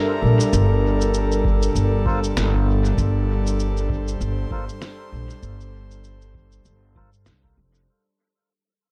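Meditative and deep, this short ambient dub fragment in G minor moves at 98 BPM with a swung sixteenth-note feel, resting on a single Gmadd9 chord while the whole passage fades out. An airy, breathy pad with chorus sits up front holding sustained chords, beside a woody, thumpy pizzicato upright bass. Muffled, pitched-down shaker and fat snare with dub echo enter at 0.4 seconds, a deep analog kick follows at 1.4 seconds in the background, and a reedy, nasal melodica plays filtered stabs with dub echo and a filter sweep from 2.1 seconds, all under light reverb.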